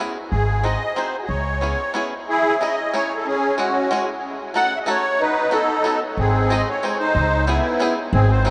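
A musette waltz in C# minor at 184 BPM with a lightly swung 3/4 lilt, nostalgic and whirling, cut from a longer piece and bathed in a huge, wet reverb that suggests a vast echoing space with a faint mains hum. A reedy, shimmering musette accordion carries the melody up front with a vintage, band-limited tone, while a bright, twangy bluegrass banjo played with fingerpicks adds percussive accompaniment beneath it. A woody, growly pizzicato upright bass sits up front from 0.3 to 1.7 seconds and returns at 6.2 seconds, as the harmony moves through chords such as G#7, C#m7, D#dim and B7.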